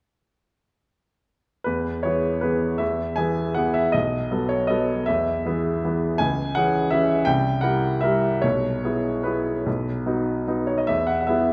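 Sparkling and graceful, this short cut from a longer classical piano waltz in E major moves in a rubato 3/4 at 141-178 BPM, with a clear, woody upright piano playing solo from 1.6 to 11.5 seconds, up front with polished, long sustain in a wet recital hall reverb, passing through chords from E to B7, C#m and a striking C7 before settling back on E.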